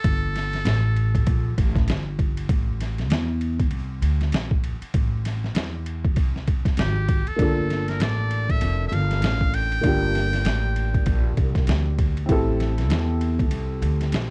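A swung 16th-note groove at 98 BPM in 4/4 drives this mellow, cool jazz-hop piece in G dorian. It rests on a gritty, overdriven, pitched-down sampler-style drum kit with a thumpy kick, medium-tuned snare, hi-hat and ride, and a woody pizzicato upright bass on steel strings, both sitting up front. A buzzy, thin trumpet with a metal mute plays a jazz-style solo line with light vibrato, briefly at the start and again from 6.8 seconds, while a worn, slightly detuned upright piano with cassette tape colour joins at 7.4 seconds. The dry home cassette recording moves from Gsus2 and Am to Gm9 and Am7, and this excerpt is cut from a longer work.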